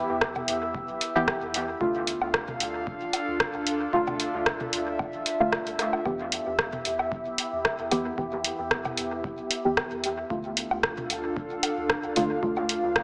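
Cavernous and hypnotic, this dub techno excerpt moves at 113 BPM in 4/4 with a light 16th-note swing, sitting in E phrygian as the harmony drifts between Em and Dm. A warbling, nostalgic pad sits up front with sustained chords, its lo-fi detuned tone shimmering through chorus, phaser and built-in reverb while sidechain pumping makes it breathe. Beneath it, a deep, dark chord stab with a nasal, decaying filter pluck repeats through chorus, phaser and dub echo. A round, soft sub bass rests in the background, pumping with the sidechain, while an analog electronic kick with a tape-warm depth anchors the groove. The overdriven deep house kit pushes its hi-hat and rim click up front through dub echo, and electronic toms and woodblock enter at 0.4 seconds with their own sidechain pumping and echo. A lush hall reverb surrounds the mix, yet the whole piece comes through a small-speaker sound.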